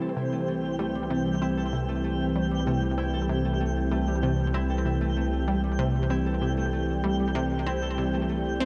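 From the first moment, a bright, airy sawtooth pad sustains chords on C under a twinkling granular shimmer, as ringing fingerpicked concert harp arpeggios and a detuned analog pluck riff with chorus and delay set a hypnotic pulse at 96 BPM in 4/4. A deep, round triangle-and-sine bass holds a low C up front. This expansive, sequencer-driven space music sits in a dark, warm mix bathed in a huge reverb with an 8.1-second tail, and the pad, harp and granular layer all carry shimmer reverb in this 8.7-second cut from a longer piece.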